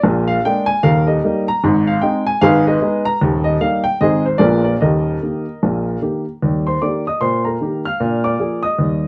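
Exuberant and swinging, this short stride-piano jazz fragment moves at 151 BPM in 4/4 with swung eighth notes, set in Eb major and tuned to A4 = 438 Hz. A solo upright piano, woody and up front, spans Eb1 to F6 for the full 9.1 seconds. It cycles through Bb7, Eb, Ab and Abm changes with a Bb7b9 turnaround before the opening phrase returns at 6.4 seconds. Moderate studio reverb and a dark, warm production frame the piano.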